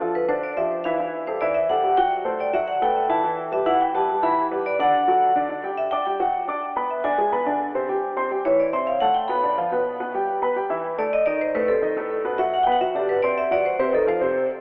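A warm grand piano opens this driving, sultry jazz excerpt in E minor at 213 BPM, its intimate, short-sustained accompaniment carrying audible action noise and a lush chorus, before the vibraphone enters at 0.2 seconds with the melody and solo. Struck with medium hard mallets, the vibraphone sounds metallic and ringing, with a slow motor vibrato, a boxy small-room character and tape echo, and sits up front beside the piano over harmony that moves from Emadd9 through Am13 to Cmaj9#11. The whole mix is dreamy and soaked in a lush hall reverb, yet given a telephone sound.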